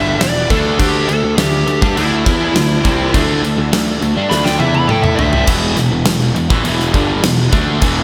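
A big arena-sized mix in moderate concert hall reverb carries this heavy, menacing hard rock excerpt in E minor at 102 BPM, where a dark, high-gain lead guitar solo with slapback echo rides over three bright, picked distorted rhythm guitars, a growly fuzz bass, a very quiet gritty tonewheel organ on slow rotary speaker, and an up-front gated 80s kit with a fat snare and tight kick that enters at 0.2 seconds and fills from 4.3 seconds before the organ drops out at 5.4 seconds and the solo at 5.5 seconds, leaving the riff to return to Em.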